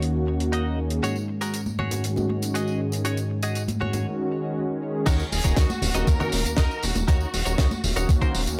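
A lightly reverberant studio sound frames this groovy, sensual nu-disco excerpt in Eb minor at 119 BPM. A smooth, warbling vintage analog pad with chorus, sidechain pumping and tape echo sits up front over a thick, detuned sawtooth bass with tube saturation and a filter sweep, while a bright, twangy clean guitar riff, recorded direct, adds subtle chorus and echo. A tight funk kit with a high-tuned snare, crash, hi-hat and tambourine drives the groove; congas, bongos and tambourine join in the background at 1.0 s as the chords move from Ebm7 to Ab7sus4, and at the drop at 5.1 s an overdriven, thumpy electronic kick punches in up front, followed at 5.3 s by a distant, expressive violin section with vibrato and analog delay carrying the melody.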